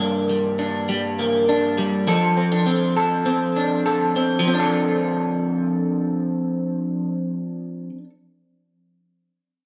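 An electric guitar played through a small old amp opens the recording, picked and compressed, with a slightly broken-up edge that sits up front in the mix. This short indie pop passage moves at 101 BPM in a straight 4/4 in F major, and its mood is nostalgic and dreamy. Analog chorus and a warbly pitch drift give the guitar's warm tone a hazy, wavering quality as it outlines a G minor chord before shifting to F6 at 2.1 seconds. The guitar carries the accompaniment through to 8.1 seconds, and the phrase changes character at 4.5 seconds. A wet studio reverb surrounds it, and the dark production keeps the top end soft and rounded.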